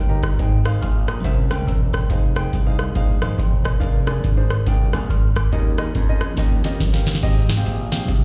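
Heard as a live gig through the venue's PA with a touch of recital hall reverb, this hopeful, uplifting uptempo gospel cut swings at 140 BPM in Ab major: a clear concert grand piano opens with a short fill and then accompanies the changes with slapback echo, a bright, punchy slap bass holds the low end, and a booming analog drum machine, up front with a deep kick, crisp snare and metallic hats, enters at 0.2 seconds and plays a fill from 6.4 seconds into the next section at 7.2 seconds.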